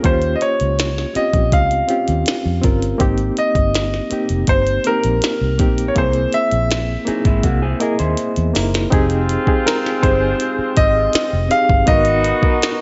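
Lush 1970s-style soul in F minor at 81 BPM, this cinematic, smooth excerpt sets a clear concert grand piano melody with slapback echo over a reedy electric piano with fast tremolo, a round, foam-muted fingered bass, and an up-front electronic kit of soft kick, tiny snare and clicky hats. A slightly broken-up, lo-fi electric guitar riff enters at 7.1 s, with a drum fill from 7.4 s. At 8.9 s a mellow horn section joins with soft-attack stabs touched by light vibrato, over chords moving from Fm9 to Abm7, all in light digital ambience.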